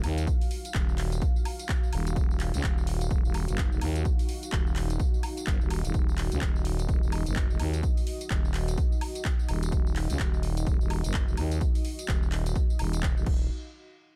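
Swaggering and bouncy, this bass house excerpt in Eb minor moves at 127 BPM with a swung 16th-note feel, holding an Ebmadd9 chord throughout. A growling, thick FM bass sits up front with tube saturation, sidechain pumping and a filter sweep across its whole length, while a punchy, tape-tinged electronic kick enters at 0.3 seconds beside a house drum kit of crash cymbal, handclaps, warm hi-hats, tambourine and woodblock. Behind them, a dark, moody analog pad of detuned sawtooth and triangle tones sustains slow-attack chords with chorus and its own sidechain pumping, all set in a digital ambience.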